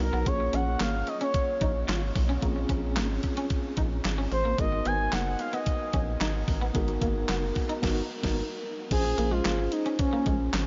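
Early-eighties boogie funk with a slick, late-night mood, this short excerpt sets a smooth, expressive portamento synth lead with chorus, vibrato and tape echo over a mellow tine electric piano and a rubbery, bouncy square-wave bass that sits dark and up front. A crisp 8-bit drum machine with a thumpy kick, handclaps, hi-hat and crash drives the groove, while a twangy, slightly broken-up electric guitar riff with ensemble chorus hovers in the background until 10.4 seconds. The dreamy mix is soaked in huge ambient reverb, moving from Bbm9 to Abm9 before a band accent from 7.8 seconds leads back to Bbm9 at 8.9 seconds.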